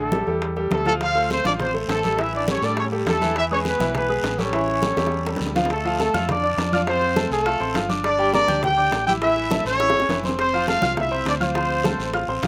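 Passionate and danceable, this salsa excerpt in D minor drives along at 205 BPM in a straight 4/4 feel. An up-front horn section carries the melody with a clear, smooth top and light vibrato, while a vintage concert grand piano supplies accompaniment with deep bass and a smooth, clear tone. Underneath, a dark, round and punchy fingered electric bass anchors the low end, and a percussion bed of tight, high-tuned bongos with slapback echo, damped low-tuned congas sitting in the background, and a raspy guiro entering at 1.0 seconds keeps the groove moving. The harmony shifts from A7sus4 and Dm7 through A7 and E before a new section at 5.7 seconds moves through Dm, F, Gmadd9 and A, settling on Dm7, with drum fills marking the turns. The mix is dry, recorded outdoors with little reverb.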